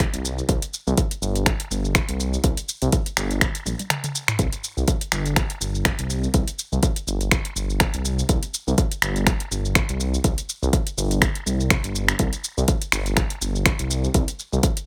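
Afro house at 123 BPM in 4/4 with a swung sixteenth-note feel, this driving, warm excerpt is cut from a longer piece and runs about 15 seconds. A deep, layered electronic kick with tape-warm character sits up front beside an electronic afro-pop kit of finger snaps, metallic hi-hats, shaker and toms, with a drum fill at 3.7 seconds, while a dark, rumbling detuned saw bass, beating and sustained in the low register, pumps against the sidechain. The mix is dry on reverb yet heavy with echo.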